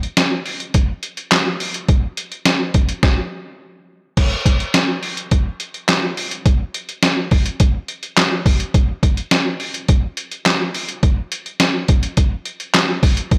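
A sampler-style trip hop drum kit sits up front, its pitched-down, muffled sound roughened by overdrive and compression, with a thumpy kick and a medium-tuned snare. Hi-hat, handclaps and crash cymbal fill out the kit in a straight 4/4 pop groove that feels upbeat yet wistful. The beat halts at 3.0 seconds and returns at 4.2 seconds, when the same section begins again and runs to the end at 13.4 seconds. The drums sound as if re-recorded in a small room, and the whole recording is dry and gritty, with a touch of light reverb. This passage is cut from a longer piece.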